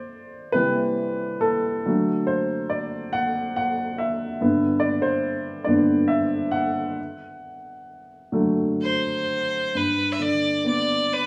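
In a free, rubato 3/4 that drifts between 61 and 73 BPM, this short fragment of a Celtic slow air unfolds in G major with a tender, nostalgic mood. An upright piano with a woody tone carries the accompaniment from the start, moving through C, D and G chords across a register from G2 to F#5. At 8.8 s a single bowed fiddle enters with the melody, its clear, earthy voice coloured by light vibrato and set up front alongside the piano. The tune stays within a narrow span from B4 to E5 as the harmony settles back onto G before the fragment ends at 11.3 s. The pair sound as if playing live together in one room, wrapped in a moderate studio reverb that lends an intimate, reflective glow.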